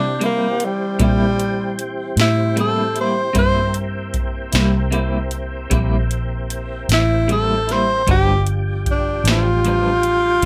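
A close-miked tenor saxophone leads this slow blues excerpt in 12/8 at 51 BPM, playing a solo with light vibrato and scooped notes in a jazz style, up front over a rollicking, gritty groove. Behind it, an electric guitar through a small old amp adds picked, slightly broken-up, compressed accompaniment with tremolo. A tonewheel organ holds smooth, clean sustained chords colored by chorus vibrato and a slow rotary speaker, sitting lowest in the mix. A dark, round, foam-muted fingered electric bass sits up front, and an analog drum machine enters at 0.2 seconds with a deep kick, punchy snare and metallic hi-hats, all dry. The harmony rests on C7 before moving to G7 at 8.1 seconds, in a moderate small-room ambience.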